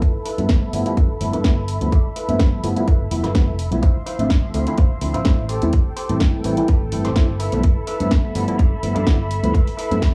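This dry, gritty recording has a small room around it and very little reverb, in a joyful, funky stretch of filtered disco house cut from a longer piece with a light swing on the sixteenths. A punchy electronic kick sits up front, joined by a layered house kit whose snare hits hard and whose bright hats pump against the kick. A warm, amped fingered bass, roughened by transformer saturation, carries the low end under a compressed, twangy riff on clean picked electric guitar. From 0.4 s a bell-like tine electric piano adds phaser-tinged accompaniment, while a symphonic string section bows out sustained chords with light vibrato and a smooth, intense top. The bass, guitar, piano and strings all pump and run through a low-pass filter, and a filter sweep spans the whole passage as the harmony moves from G13 through Dm9 and Am7 back to G13.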